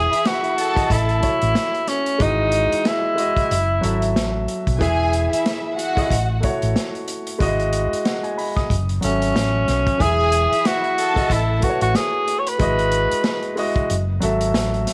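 A small room ambience gives this clip its close, intimate sound, with the breathy tenor saxophone placed up front. It is lush 1970s-style soul at 92 BPM in 4/4 with a swung sixteenth-note feel, set in E major and moving through Emaj7, A6 and F#m7 in a smooth, romantic mood. The saxophone carries the melody with a whispered, subtone voice, soft attacks, scooped notes and vibrato, pausing at 4.5 seconds and returning at 9.0 seconds. A distant, bowed string section plays a second line with expressive vibrato until 11.6 seconds, while the open, long-sustaining concert grand piano fills out the accompaniment with deep bass. Underneath, a fingered electric bass sounds dark, round and punchy, and a vintage acoustic drum kit with a tight kick, medium-tuned snare and hi-hat has a rolled-off top.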